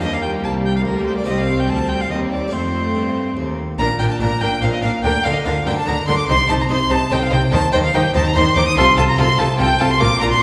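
A solo violin with focused vibrato leads this lively, festive baroque-style concerto movement in Bb major at 145 BPM in 3/4, soaring over a background of chamber and lush symphonic violin sections, smooth-topped violas and a round, dry harpsichord, while a focused cello section carries the bass and an even double bass section joins at 3.8 seconds, all set in the reverberant space of a recital hall in this brief cut from a longer piece.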